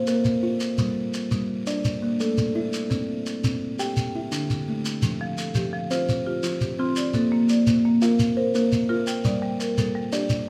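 A southern African traditional piece built on a mbira-style interlocking cycle in a straight 12/8 feel, this short section from a longer work has a hypnotic, warm mood. A buzzing kalimba opens at the start and carries the arpeggios throughout, its fingertip plucks sounding woody and mellow, ringing and airy, placed up front. A shekere joins almost at once, grainy and saturated, also sitting close to the listener. At 5.2 seconds a marimba played with medium hard mallets adds its own arpeggios, its rosewood bars dark, smooth and percussive. The harmony moves from F through Bb to G minor in the later seconds, and a recital hall reverb gives the ensemble a generous, wet space.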